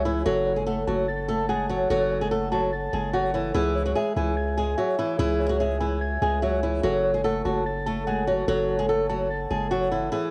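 A fingerpicked flamenco guitar leads this dark, hard-hitting trap cut, sitting up front with an acoustic warmth and a cassette-tape coloring as it carries the melody. Beneath it, muted felt-like synth keys play a soft, intimate accompaniment, blending triangle and sawtooth tones with a noise layer, a filter sweep and a chorus shimmer that gives them a shadowy hue. A long, sustained 808-style bass, deep and sine-pure with a fast attack and a decaying tail, anchors the low end in a half-time feel until 10.1 seconds. The harmony moves between F#m and C#m, returning to F#m at 6.8 seconds. Light reverb and studio ambience frame this short home recording on cassette, cut from a longer piece.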